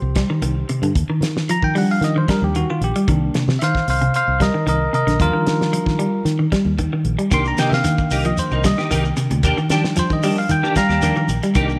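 Hypnotic and funky, this afrobeat excerpt moves at 113 BPM in a straight 4/4, cycling between C minor and E-flat major seventh colours. A bell-like tine electric piano sits up front and takes the lead throughout, its bright, clean voice spanning a generous range over a round, dark fingered electric bass that sounds foam-muted. A clean, picked electric guitar plays arpeggios in a narrow low register from the start, while a damped 70s drum kit supplies hi-hat, a tight kick and a fat snare with a rolled-off top. At 7.3 seconds a second clean guitar adds stabs treated with an ensemble chorus, and a grainy, mellow shekere joins quietly in the background. A moderate echo chamber reverb gives the whole mix a studio sense of space.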